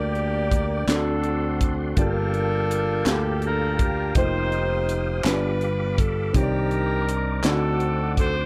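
Set in a slow 6/8 at 55 BPM counted in dotted quarters, this solemn, soulful gospel excerpt in G minor moves through rich chords from Gm/D and D7 to Gm9, F9sus4, Cm9 and a closing D7b9. A jazz-style alto saxophone with vibrato and a smooth, pop-style horn section both carry the melody, over an intimate concert grand piano with audible action noise sitting in the background, a lightly overdriven tonewheel organ with key click, chorus vibrato and slow rotary speaker holding sustained chords, and a punchy, up-front fingered electric bass. A polished fusion drum kit with a high-tuned snare and punchy kick enters at 0.2 seconds, hollow, distant group handclaps join at 0.9 seconds, and the whole piece has a dry, close 1970s studio sound.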